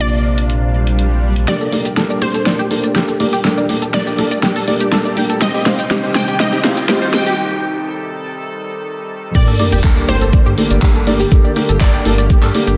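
A dense, heavily limited master with a lush hall reverb carries this driving, dreamy progressive house excerpt in G minor at 122 BPM, where a morphing wavetable pad, a dark, intimate grand piano with audible action noise playing filtered stabs, and a bright, detuned unison pluck melody all pump against the sidechain, with tape echo on the pluck and piano. A reversed, granular swelling texture and a brief rumbling detuned saw bass open the piece before a tight, mellow sequenced arpeggio enters at 1.5 seconds, while an overdriven pop kit with a fat snare, handclaps and shaker drives a build-up with filter sweeps and a drum fill. Faint swells and risers lead into the drop at 9.3 seconds, where a sub drop and a knocking electronic kick land and the bass returns on Gmadd9, after chords that have moved from Bbadd9 through Gmadd9 and Cm.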